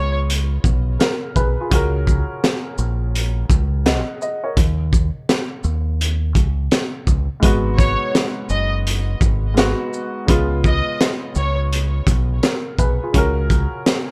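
Boom-bap hip-hop with a soulful feel, built on a crunchy, saturated breakbeat kit with a high-tuned snare and tight kick, a round, punchy dub bass played with the fingers, and a woody, slightly detuned upright piano with cassette-tape colouring, while a lush, distant violin section adds an intense, vibrato-rich melody from 7.8 s in this short, dry excerpt.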